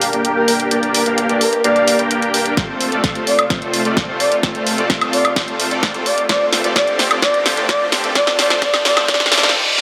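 A straight 4/4 pulse at 129 BPM drives this euphoric, emotional festival progressive house build-up in G minor, with a house drum kit of punchy snare, bright hats and woodblock up front, a punchy layered electronic kick joining at 2.6 s, and a drum fill running toward a stop at 9.6 s. A huge, detuned supersaw riff pumps against the sidechain under a filter sweep and tape echo, while a lush, warbling vintage pad holds sustained chords in the background and a fat, nasal analog bass sits very quiet beneath. A breathy, flute-like lead carries the melody with chorus, tremolo and echo over chords moving from Gm to F to G5, as a faint riser and reverse cymbal enter at 5.1 s, all set in a wet hall reverb.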